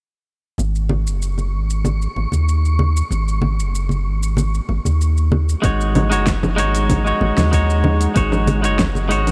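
A straight 4/4 groove at 95 BPM drives this sunny, smooth sunset chillout excerpt, built on a layered deep house drum kit with a fat snare and metallic hats, bright acoustic congas heard close and dry, and a round, sine-like sub bass up front whose filter sweeps until 5.6 seconds over an Ab7sus4 harmony. From 1.3 seconds an airy, breathy wind-like tuned noise texture hovers high above with its own reverb and ensemble chorus. At 5.6 seconds a twangy, picked clean electric guitar steps forward with compressed tone and tape echo, joined by a soft, overdriven electronic kick tucked behind, all set in a light reverb.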